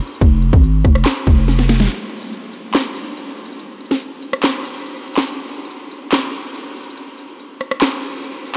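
Hip hop trap at 142 BPM in a half-time feel, wistful and dreamy, cut from a longer piece: an electronic trap drum kit sits up front with a hard-clipped kick, sharp snare, crisp hi-hats, handclaps and rim clicks, while a growling, buzzy 808-style bass with a fast attack plays only from 0.2 to 1.9 seconds, ending as a drum fill leads into a break that runs to 8.6 seconds, all bathed in a huge ambient reverb that leaves the mix soaked and dreamy.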